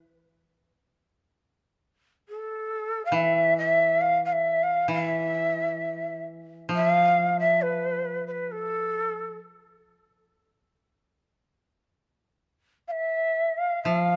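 Close, detailed microphones and a light reverb give this short cut from a longer Japanese traditional piece an intimate, calm and austere sound. A breathy bamboo shakuhachi carries the melody up front, entering at 2.3 seconds with tongued notes, a chiff at their starts, and an unsteady vibrato. The koto joins at 3.1 seconds as accompaniment, its fingerpicked tones dry and woody and set lower in the mix, staying within a narrow low range. The pulse is loose and rubato, drifting around 64 to 71 BPM in 2/4. After a pause, the shakuhachi returns at 12.9 seconds, with the koto reappearing just before the cut ends.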